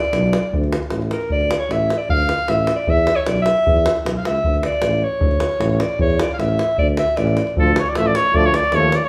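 A tight, up-front davul and a mellow, vibrato-laden alto saxophone solo open this bittersweet, restless Balkan brass band fragment at 154 BPM in a straight 2/4, with a distant, roomy tuba holding the low end as the harmony moves through D5 and E5 chords. At 7.6 seconds the saxophone gives way to a vintage-toned trumpet lead over a Dm chord, while a trombone and a clear, soft-attacked euphonium sit in the background. The band plays live in one large studio that lends the sound a wet 1.2-second reverb before the cut at 9.1 seconds.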